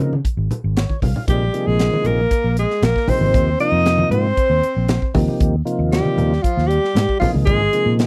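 A clear alto saxophone carries the melody up front from 1.3 seconds with soft, scooped, vibrato-laden notes, joined by a breathy, subtoned tenor saxophone playing a lower second line. Underneath, a dark, round tonewheel organ turns through a slow rotary speaker with chorus vibrato and adds a brief fill at 0.5 seconds. A punchy, amped fingered electric bass and a tight funk drum kit with a medium-tuned snare sit up front, the drums slipping in a fill just before the horns, while damped, low-tuned congas murmur in the background of this intense, nocturnal electric jazz fusion excerpt with a close, dry 1970s-style studio sound.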